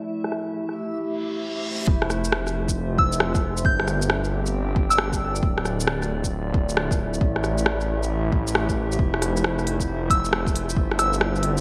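Bright, 1980s-style digital production with light reverb and a digital ambience frames this wistful, nocturnal future garage excerpt at 135 BPM in 4/4, swung at 65% on the sixteenths and tuned to A4 = 438 Hz. A warbling, lo-fi tape-like pad holds sustained chords throughout, its detuned square and triangle tones dark and nostalgic under chorus, built-in reverb and sidechain pumping, while a reversed, dreamy granular texture glimmers in the background for the first second. An organic electronic drum kit of crisp hats, rim click and shaker sits up front from 0.2 s, its parts low-pass filtered and given gated reverb, and a filter sweep on the pad plus a reverse cymbal lead into the main section. At 1.9 s a punchy, layered electronic kick arrives alongside a menacing detuned saw bass, saturated through tube warmth and pumping, its unison sawtooth and sine layers evolving with a filter swell. 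A soft, pure FM bell carries the melody high above with chorus and delay, appearing at 3.0 s and returning near the close. The harmony cycles through Am7, Fmaj7, Gsus4 and Dmadd9.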